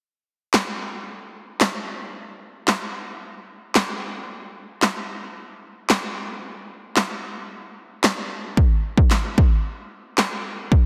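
Upbeat and euphoric, this short pop fragment is cut from a longer piece and moves at 112 BPM in a straight 4/4 feel. The only part is a punchy analog drum machine, entering at 0.5 seconds and running until 10.8 seconds, built from handclaps, kick drum and snare drum. Its electronic kick and snare hit with a firm, punchy attack and sit up front in the mix. A moderate, lush hall reverb with a 2.7-second decay surrounds the sound. The master is dense and heavily limited in a modern style, giving the brief passage a compact, forceful presence.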